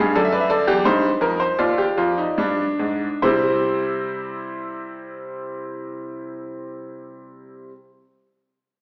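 A bright, vintage-toned grand piano with long sustain sits up front and plays alone from 0.0 to 7.7 seconds in this contemplative, solemn classical fragment of a baroque-style three-part fugue in 3/4, slowing over its opening 3.2 seconds before a new section begins, all heard through a wet recital-hall reverb with a small-speaker sound.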